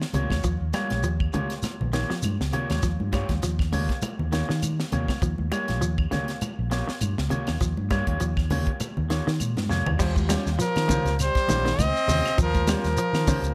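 Lightly reverberant, this joyful, funky afrobeat excerpt moves at 100 BPM in Eb mixolydian with a gentle sixteenth-note swing. It rests on a round, dark fingered electric bass and a dry, up-front funk drum kit with a high-tuned snare and tight kick. Bright, clean arpeggios from a semi-hollow guitar sit in the background beside twangy, slightly broken-up stabs from a second electric guitar bathed in spring reverb, while a grainy, close shekere, soft-handed high congas and woody claves fill out the percussion. After a drum fill at 9.4 seconds, the harmony moves from Eb9 to Eb13, and at 10.6 seconds a close-miked trumpet with light vibrato takes the melody up front, joined by a brilliant, smooth-topped trombone on a second line.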